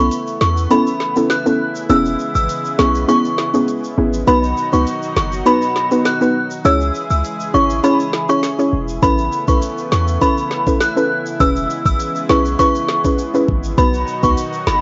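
A straight 4/4 dancehall groove at 101 BPM rides on an electronic island pop drum kit with a knocking kick, woody snare, rim clicks and smooth hats, joined by a faint, ringing tube shaker from 0.1 seconds, while a deep, boomy 808-style bass sits up front. In E major, a soft, round, dark filter pluck with sidechain pumping carries the accompaniment until 14.4 seconds, beneath a lush, detuned unison pad holding bright, airy chords through Aadd9, E6, B and C#m. On top, an inharmonic FM synth chime rings out the melody with ensemble chorus and analog delay, and the light reverb and hazy home-cassette sound give this summery, sunny fragment a lo-fi glow.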